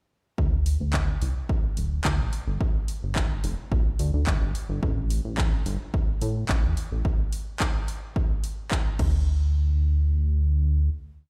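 Nu-disco at 108 BPM with a cosmic, groovy mood, this short piece rides a glossy, chorused synth bass playing a funky syncopated line from 0.4 s, a punchy, tape-warm four-on-the-floor electronic kick up front, and an overdriven house kit with bright hi-hats, handclaps and crash cymbal on a disco backbeat, all heard as if played on a big sound system in a bare room with large reverb, before the groove gives way to a final hit at 9.3 s.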